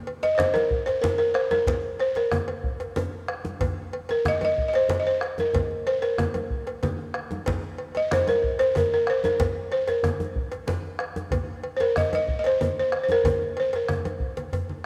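Festive and earthy, this West African traditional drum ensemble rolls along in 12/8 at 124 BPM, cut from a longer piece, with an up-front, woody balafon carrying the melody between Bb4 and Eb5, its rubber mallets giving a dry, buzzing, full tone. Beneath it, a tight, cracking djembe with metal rattles, ringing medium-tuned congas, a deep, dark bombo and a metallic cowbell set close and dry in the background fill out the groove. A lush hall reverb and the faint mains hum of a home cassette recording colour the sound, and a drum fill closes things at 14.4 seconds.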